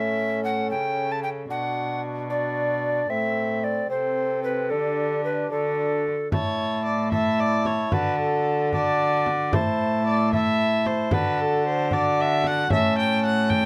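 A classical, Renaissance-style consort dance in a stately, courtly 6/8 at 75 BPM, where an airy, chiffy tenor recorder with crisp attack and vibrato carries the melody over a reedy, gut-string viola second line, a warm bassoon accompaniment and a rich, nasal bowed cello bass, joined at 6.3 seconds by a deep, dry frame drum played with soft hands, set in light reverb and captured with close, detailed microphones.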